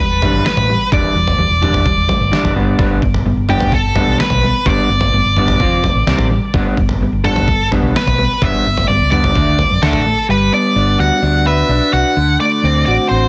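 Driven by a straight 4/4 pulse at 128 BPM, this bittersweet, restless indie rock excerpt from a longer piece pairs a thumpy, overdriven 8-bit drum machine of kick, snare and toms, re-recorded in a large room and dropping out at 10.0 seconds, with a round, dark hollow-body bass. Up front, a slightly broken-up guitar through a small old amp plays a vibrato-tinged riff, while an octave-fuzz lead carries the melody in a dark, distorted tone with digital delay. Chords move from Em7 through G, F5, C5 and D5 before shifting at 10.3 seconds to Gmaj7 and D7, all in a dry, dense and heavily limited modern master.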